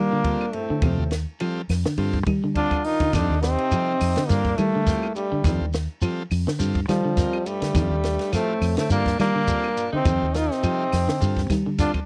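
A clear, up-front trombone carries the melody with scooped notes, light vibrato and a slapback echo, while a bright alto saxophone in the background and a tight, very quiet trombone section add second lines in this funky, hypnotic afrobeat excerpt with swung sixteenths. Beneath them sit a round, foam-muted fingered bass and a compact cocktail kit with a punchy kick, high-tuned snare and dark cymbals, as a twangy, slightly broken-up guitar plays arpeggios through lush chorus and a buzzy, overdriven combo organ supplies accompaniment over a Gm7 to F9 vamp. Woody claves sit in the background, a grainy shekere joins at 3.1 seconds, and the recording has a dry, close 1970s studio sound.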